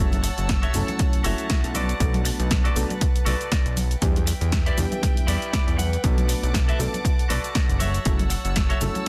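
A fat, detuned sawtooth bass with a saturated filter pluck and fast attack anchors this cosmic, sensual nu-disco excerpt, riding a swung sixteenth feel over chords that move from F#m7 through Bm7 and Em7 and back. A house drum kit of hi-hat, shaker and snare with tape-warm hats plays from the start, and a layered, punchy electronic kick enters at 0.5 seconds, while bright, compressed congas played with soft hands sit in the background. A clean, picked electric guitar plays a dark riff through subtle chorus and digital delay, adding a short fill at 5.3 seconds. Beneath it, a mellow, worn grand piano with a boxy, long-sustained tone supplies accompaniment through digital delay, and a studio string section holds bowed chords with a reedy, gut-string tone and smooth top, pumping under sidechain. Studio reverb and a dense, heavily limited modern master round out the short clip.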